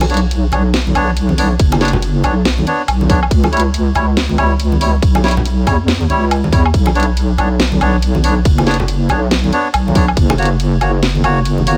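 A half-time 4/4 groove at 140 BPM, swung 61% on the 16ths, drives this cavernous, brooding deep dubstep passage in B harmonic minor: an up-front wobbling bass of detuned square and sine tones thickened by chorus, a garage kit with a cracking snare, bright hats, ride and woodblock, background congas with hard hands and dub echo, and breathy, nasal melodica stabs with dub echo over Bmadd9, C#dim and F# chords, while a tight electronic kick enters at 1.6 s and stops at 10.3 s, all in a dry mix.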